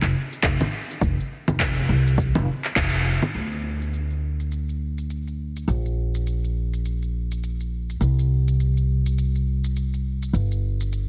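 Organic downtempo with a meditative, mystical mood, this short cut from a longer piece moves in 4/4 with a swung sixteenth-note feel. An upright bass plays throughout, plucked pizzicato on steel strings, its woody, up-front tone pulsing under sidechain pumping in a low register. Electronic handclaps, shaker and congas run the whole way as a layered, overdriven percussion bed placed up front, with low-pass filtering softening the percussion and snare. A deep, overdriven electronic kick drum appears only briefly, from 0.4 to 2.9 seconds, and the band hits an accent at 2.8 seconds before the music moves into a new section at 3.3 seconds. Light reverb and digital ambience surround the parts, while heavy multiband compression gives the mix a squeezed, radio-like character.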